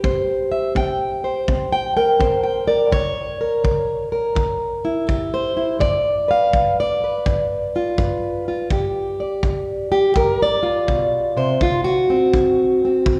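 A boxy, fingerpicked steel-string parlour guitar sits up front from the first moment, carrying the melody over a tight, brushed kick drum with a rolled-off top, in a gritty, soulful acoustic country blues with a loping swing. The guitar moves from C7 through C#dim7 to G7, reaching D7 at 11.6 seconds. The pair are bathed in the lush, lingering reverb of a church or concert hall, in a short fragment cut from a longer piece.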